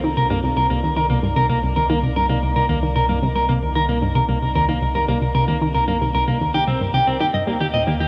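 Cosmic and expansive, this short excerpt of ambient, sequencer-driven space music moves at 113 BPM in C minor, resting on Cm7 before shifting to Eb at 7.2 seconds. A nasal, wave-folded analog pluck with chorus and delay drives a riff over a deep, round sine sub bass, while an evolving, detuned wavetable pad fades in behind them with chorus and its own reverb. A clean, picked electric guitar enters up front at 0.2 seconds with delayed arpeggios, and the whole piece sits in a huge, wet reverb with a worn, warbling cassette-tape pitch drift.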